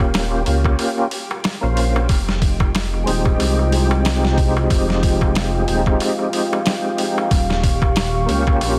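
This hypnotic, brooding trip hop excerpt in F minor opens at 92 BPM with a lightly overdriven, percussive tonewheel organ up front, its slow rotary speaker, chorus vibrato, tremolo and tape echo colouring the chords. It sits over a deep, rumbling detuned saw bass with tube saturation, and a crisp metal-shell darbuka set in the background. A gritty, pitched-down boom bap sampler-style kit follows almost at once, with a thumpy kick and a high-tuned snare riding a 16th-note swing. From 0.4 s a very quiet, flickering grainy texture hovers on a single note, G4, and at 2.4 s a moody analog pad with chorus settles in with slow-attack sustained chords. The harmony moves from Eb9 to Fm7 and back to Eb9. The whole is a dense, heavily limited master with light digital ambience and a bed of vinyl crackle.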